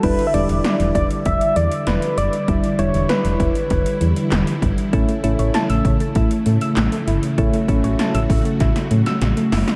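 A nocturnal, cool synth-pop piece at 98 BPM in E dorian opens on Em7 with a gentle, keys-like FM synth lead carrying the melody through chorus, tape echo and shimmer reverb until 4.6 s, over mellow electric-piano-like synth keys, a full-bodied vintage string-machine cello part with ensemble chorus, a punchy dark FM bass and up-front 80s electronic drums with a gated snare and metallic hats, before a soft round pluck takes up arpeggios at 4.9 s as the chord moves to A and a drum fill arrives at 8.6 s, the whole mix dreamy and soaked in plate reverb.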